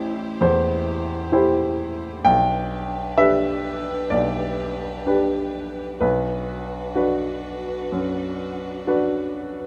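Reflective and fragile, this neoclassical fragment for piano and strings moves at a slow, rubato 64 BPM in 4/4, tuned to A4 = 441 Hz. An up-front baby grand piano with a bright, brilliant, natural tone and short sustain plays the accompaniment across the full 9.7 seconds, while a bowed chamber string ensemble, rich and focused with vibrato, holds quieter sustained chords alongside it. The harmony passes from Am7 to G/B at 2.3 seconds and Bm at 6.0 seconds, all in a room with light reverb.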